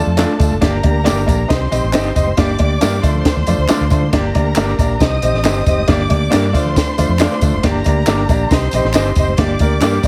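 Urgent and passionate, this uptempo 1960s-style soul excerpt in G minor drives at 137 BPM over a minor progression. A compact cocktail drum kit gives a punchy kick and a high-tuned snare, and a round, foam-muted fingered electric bass sits beside it. An up-front baby grand piano plays accompaniment and adds a brief fill at 3.5 seconds, while a close, bowed violin section with expressive vibrato carries a second line. A very quiet, twangy guitar through a small old amp adds slightly broken-up stabs, and soft-handed, damped congas join group handclaps and tambourine, all under light reverb and a heavily compressed radio sound.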